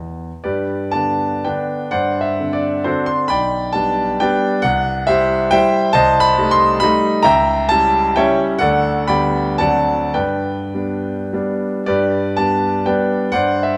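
Dotted rhythms in a triple metre, played with rubato, drive this nostalgic, capricious romantic dance for solo concert grand piano. The piano sits up front with a deep bass and long sustain, its harmony winding through a diminished colour before settling home at 10.2 seconds, all bathed in the wet reverb of a recital hall in this brief cut from a longer piece.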